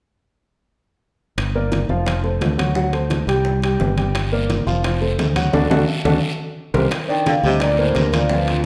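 A driving, sophisticated Afro-Cuban jazz cut at 173 BPM in G minor opens at 1.4 s with a dark, punchy fingered electric bass up front, soft-handed low-tuned congas and hard-handed bongos in the background, and ringing metal-shell timbales. A natural, short-sustained baby grand piano joins almost at once as accompaniment over Gm, F, D7 and C5 changes. A raspy, saturated guiro enters at 4.2 s, and a drum fill with a band accent leads into a new section, where at 7.1 s a metallic vibraphone with medium mallets and motor off takes the melody while a warm baritone saxophone with light vibrato and scooped notes plays a smooth second line, set in a moderate large studio reverb.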